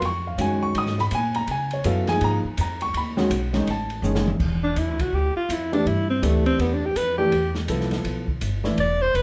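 Recorded live in one room with a moderate 1.2 s studio reverb and lossy compression artefacts, this searching, spiritual modal jazz fragment swings at 164 BPM in Bb phrygian, as an intimate grand piano with audible action noise, a woody, growly pizzicato upright bass and a dark, smooth drum kit with a boomy kick set the groove, a drum fill at 4.0 s carries the move to E phrygian, and an up-front alto saxophone with vibrato and scooped notes takes a solo from 4.6 s.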